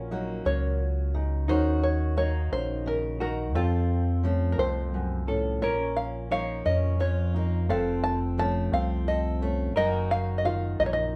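Haunting and reflective, this acoustic folk passage moves at a slow 58 BPM in a straight 6/8, with a plunky, twangy open-back banjo carrying the melody up front and a round, amped electric bass anchoring the low end. A clean, picked hollow-body jazz guitar traces a second line, while a fingerpicked steel-string acoustic guitar supplies accompaniment and a woody, slightly detuned upright piano adds dark arpeggios. Moderate studio reverb places the ensemble a little further back in the room as the harmony drifts from Gb/Bb through F and Bbm to Ebm/Gb by 9.8 seconds.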